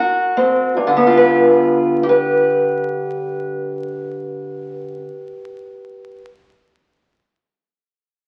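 Through the crackle of a very old 78 rpm record and a large, wet studio reverb, a dark, boxy parlour steel-string acoustic guitar sits up front in this laid-back yet rollicking blues fragment in 12/8, fingerpicked solo from Ab9 onto G7 across its brief 6.3 seconds.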